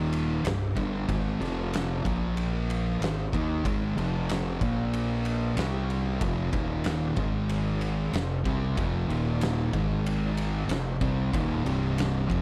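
A small room surrounds this brooding, ominous stoner and doom metal fragment, cut from a longer piece, where an oversized, low-tuned acoustic kit booms with a fat snare, dark ride cymbals and a gritty, saturated pumping sound. Two thick fuzz guitars sit in the background, one dark and one warm, picking a heavy riff that moves through power chords such as C5, Ab5, F5, Bb5 and Eb5. Beneath them a fingered electric bass, direct and amped with overdriven fuzz, adds a punchy low end from the opening second to the close at 12.4 seconds.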